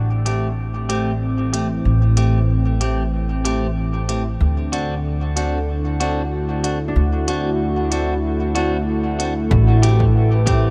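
A detuned, chorused sawtooth pad, a very quiet thumb-plucked Celtic harp and a woody, up-front pizzicato upright bass open this spacious, meditative ambient dub excerpt at 94 BPM in A dorian, soon joined by crisp electronic hi-hats re-recorded in a large room and clean picked electric guitar stabs with warbly pitch drift, low-pass filtering and dub echo, while the harmony moves from Am7 to D7 and back, the harp's ringing arpeggios return at 6.9 seconds, and a punchy, overdriven electronic kick arrives at 9.5 seconds, the whole mix sitting in light reverb and digital ambience.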